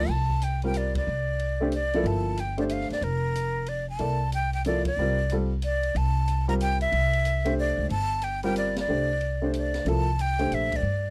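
A breathy, straight-toned flute carries the melody up front in this spiritual, hypnotic modal jazz waltz at 184 BPM in 3/4, swinging in C mixolydian over a C9sus4 chord. A slightly detuned upright piano with short sustain supplies the accompaniment, while a woody, thumpy pizzicato upright bass on gut strings holds the low end. A quieter acoustic drum kit with dark cymbals, a high-tuned snare and a boomy kick joins at 0.3 seconds, and the full band hits shared accents throughout this dry, close 1970s-style studio recording cut from a longer piece.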